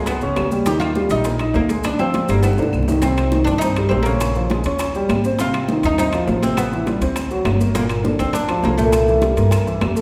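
Heard through the long, church-like ring of a recital hall, this short cut from a longer Afro-Cuban jazz piece moves at a brisk 203 BPM in straight 4/4 and feels sunny and lively. A plectrum-plucked, fretless oud with doubled strings carries the melody in a deep, woody voice until 9.2 s, while an intimate concert grand piano with audible action noise and long sustain supplies the harmony up front. A pizzicato upright bass on steel strings sits equally forward, anchoring the low end. The percussion layers bright, high-tuned congas, round, low-tuned bongos kept very quiet, ringing metal-shell timbales, distant claves and grainy, mellow maracas, with the congas, timbales and claves tucked into the background. A drum fill from 2.4 to 3.0 s leads into a settled C minor, where the harmony runs through jazzy sevenths and ninths such as Cm7, Eb7 and Am9.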